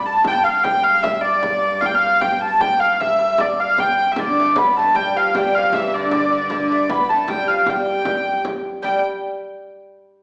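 Medieval dance in 3/4 at 154 BPM, ancient and festive in mood, set in G mixolydian, cut from a longer piece. A dark, nasal, reedy hurdy-gurdy carries the melody up front over a woody viola da gamba drone held on G2 in the background, while a deep, large frame drum enters at 0.2 seconds and a bright, delicate fingerpicked lute adds a second line from 4.2 seconds. The whole is bathed in a wet recital hall reverb with a church or concert hall ambience and a small speaker sound.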